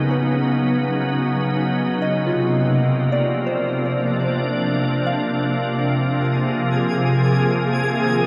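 Ambient music at 62 BPM in a straight 4/4, this short cut from a longer piece feels warm and luminous. A soft, organ-like additive pad sits up front, holding sustained chords from C3 to Eb4 with a slow attack, a warbling, detuned vintage character and an ensemble chorus. Just behind it, a gentle FM synth bell plays arpeggios between Db4 and F5, its mellow, decaying notes carried by chorus, delay and shimmer reverb. At 6.4 seconds a twinkling granular texture joins, adding sparkling octave-up shimmer from Ab4 to Ab5. The harmony moves from Db9sus4 to Bbadd9 at 2.1 seconds and Abadd9 at 6.0 seconds. A huge, wet reverb with a 7.4-second decay surrounds the dark, warm production.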